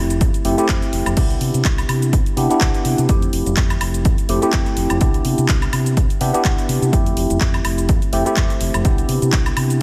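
A clean, up-front tine electric piano with phaser and sidechain pumping opens alongside a dark, round fingered electric bass that pumps too, moving between Fmaj7 and Cmaj7 chords in C major in this feel-good, funky filtered disco house excerpt at 125 BPM. From 0.1 seconds a house kit of crash cymbal, handclaps, shaker, woodblock and warm hi-hats rides a 16th-note swing, and a punchy, tape-warm electronic kick sits loudest from 0.2 to 9.4 seconds. A light reverb gives the parts a little air.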